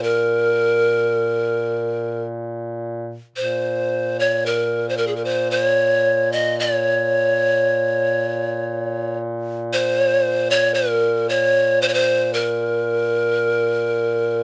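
The recording sits in a moderate studio reverb that places the instruments in a modest, enclosed room. This is a mournful, longing Caucasian folk lament in a rubato triple metre, cut from a longer piece. A breathy, mellow pan flute carries the melody up front from the start. It has a polished, woody straight tone with tongued attacks, audible chiff and an unsteady quality. Beneath it, a warm duduk holds a low drone through all 14.4 seconds, quieter than the flute, with scooped notes and a vintage, folk-style character. The opening phrase gives way to a new passage at 3.4 seconds, and the music stays suspended between the grieving flute line and the sustained drone.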